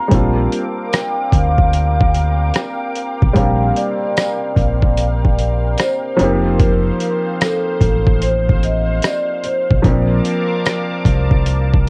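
Cosy and mellow, this short lo-fi hip hop excerpt in Bb major moves at an easy 74 BPM with a loose swing on the sixteenths. A vibraphone played with soft mallets carries the melody, its metallic, ringing tone given a slow motor vibrato and softened further by a low-pass filter, analog delay and plate reverb. Beneath it, a felt-muted upright piano supplies intimate accompaniment, its thin felt and audible action noise colored by cassette tape, while a lush, detuned sawtooth pad with a slow attack holds sustained chords high above, shimmering through chorus and phaser. Entering at 0.1 seconds, a deep, round fingered electric bass and a gritty, pitched-down boom bap sampler-style kit of thumpy kick, hi-hat and rim click sit up front, the drums pushed by overdrive. A jingly tambourine lingers in the background from 0.9 to 10.9 seconds as the harmony moves from Bb6 to F7sus4 at 6.2 seconds and settles on Bbmaj7, all within a light reverb and a cassette-tape sheen.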